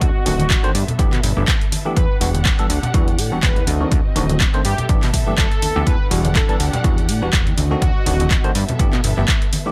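Opening on a punchy, tape-warm kick up front with a drum machine's handclaps and hi-hat, soft-handed egg shaker and congas in the background, a plucky sawtooth bass, lush bowed strings and fat, nasal synth brass carrying the melody, with a bell-like tine electric piano through a phaser entering at 0.3 s, this sensual, funky filtered disco house excerpt grooves at 123 BPM in E minor with a 16th-note swing, its parts pumping against the kick through sidechain and low-pass filtering over D7b9, G69 and Em9 chords in a dry mix.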